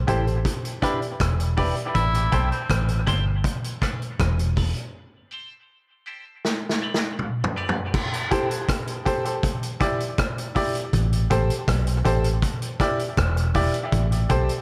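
A dark, round muted bass opens this meditative, hypnotic dub reggae piece. It is joined at once by a gritty, saturated vintage drum kit with dark cymbals, a clean, phased electric guitar sitting in the background, and bright, woody upright piano stabs, the guitar and piano both trailing dub echo through a filter sweep in an echo-heavy mix. A breathy, whispered tenor saxophone with vibrato and scooped notes adds a brief echoing second line from 1.9 to 3.9 seconds, then a break with a drum fill leads into the second section, where piano and drums carry on and the punchy bass returns at 10.9 seconds.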